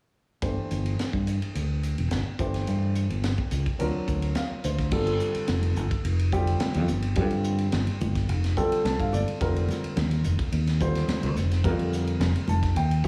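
A dark, mellow baby grand piano with short sustain, a growly, up-front fingered electric bass and a tight funk drum kit with dark cymbals, a high-tuned snare and a tight kick open this driving, intense electric jazz fusion excerpt at 107 BPM in G dorian, turning to G minor at 4.9 s as thick-skinned, damped congas enter very quietly and close, while the piano adds fills around 4.1 s and 8.3 s over sus and altered chords in a small, natural-sounding room.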